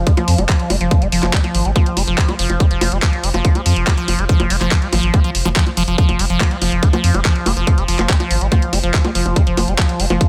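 Driving and hypnotic, this short cut from a longer psychedelic trance track runs at 142 BPM in F minor over an F5 chord, with a tight, up-front electronic kick and a bright-hatted garage kit of bongos, handclaps and hi-hat pushing under a round, deep analog bass, while a squelchy, resonant liquid acid riff pumps through phaser and digital delay and a very quiet, ethereal pad with a slow attack drifts in from 0.5 seconds, all in a dry room.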